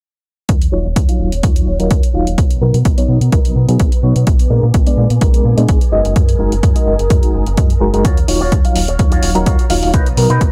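At 0.5 s an overdriven, punchy electronic kick sits up front alongside gritty analog hi-hats, a snappy FM bass with a metallic, decaying attack, and a lush vintage string machine tucked in the background, with the hats, bass and strings sharing a sidechain pump at 127 BPM. This is filtered disco house in Eb minor with a light 16th-note swing, and its nostalgic, groovy mood comes from a chord cycle of Ebm9, Bmaj7, Bb7b9 and Gb69. From 0.7 s a reedy electric piano with fast tremolo, phaser and 12-bit sampler grit fills in the accompaniment, while the strings add their own phaser and ensemble chorus over a sawtooth, sub-octave body. A filter sweep runs through the whole passage, shaping the strings, bass, piano and guitar through a low-pass filter. At 8.0 s a bright, twangy picked guitar riff arrives through an envelope filter and dub echo, giving the dry, echo-heavy mix a last flourish before this section of a longer piece cuts off.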